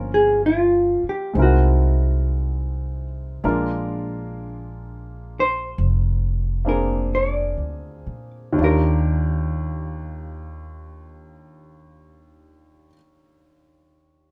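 Intimate and late-night, this short jazz ballad excerpt in Eb major drifts along at a very slow swung tempo of 38-63 BPM, slowing down through its first 8.6 seconds as the harmony moves from Gm7b5 and C7alt through Bb7 to settle on Ebmaj9. A dark, clean hollow-body electric guitar carries the fingered melody up front, while a pizzicato upright bass with a woody, steel-string tone anchors the low end. A clear, smooth upright piano with a vintage character and short sustain provides accompaniment and continues alone after the guitar and bass stop at 12.9 seconds, all in a dry sound with little reverb.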